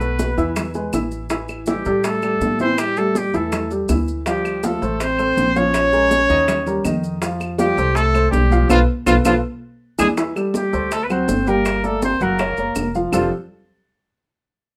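A straight 4/4 groove drives this sophisticated, lively piece of Afro-Cuban jazz, carried by high-tuned congas with a thick skin and tight bongos, both played with soft hands and set back in the mix. Grainy maracas sit close and dry, while woody claves join at 0.6 seconds, sharing the drums' vintage, band-limited tone. A growly pizzicato upright bass with steel strings anchors the low end beneath a baby grand piano whose intimate accompaniment carries audible action noise and a short sustain. Up front, a warm trumpet states the melody with light vibrato and a distant, roomy sound, while a punchy, close-miked trombone plays a forceful second line further back. The whole band lands an accent from 8.7 to 10.2 seconds, and light reverb gives this excerpt a natural sense of space.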